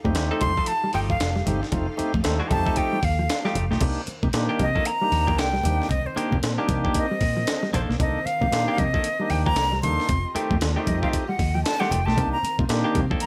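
Sly and hypnotic, this funk excerpt rides a swung sixteenth-note groove at 115 BPM in C dorian, cut from a longer piece and moving between F9 and Cm9 chords. Up front, a gritty, pitched-up breakbeat sampler-style drum kit hits with a thumpy kick, high-tuned snare, hi-hat and crash, while very quiet congas with hard hands and a thin, low-tuned skin sit close and dry beside it. A dark, foam-muted fingered electric bass gives a round, punchy bottom, and a mellow electric guitar plays a clean riff in the background as a picked semi-hollow guitar adds bright, hollow-body accompaniment from 0.3 seconds. A reedy tonewheel organ punctuates with clean stabs through a stopped rotary speaker, and a very quiet string section holds lush, bowed sul tasto chords with a soft attack. The airy silver flute carries the melody up front in plate reverb, its tone vibrato-laden and unsteady, and from 3.8 seconds it takes a solo that runs to the end, all set in a moderate studio room.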